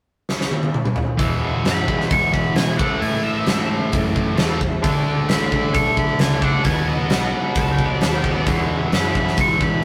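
A huge arena drum kit with a fat snare and punchy kick opens this swaggering, gritty slice of blues rock and southern rock at 132 BPM, kicking off with a fill from 0.3 seconds before the full band arrives at 1.2 seconds on an E chord moving through A, D and B. A sludgy, double-tracked guitar riff sits up front over a dark, round, foam-muted bass, while an octave-fuzz lead guitar carries the melody from 1.7 seconds and a thick tonewheel organ holds very quiet sustained chords through a slow rotary speaker. The rough rehearsal-room recording has a warm, saturated feel with moderate reverb, and it is cut from a longer piece.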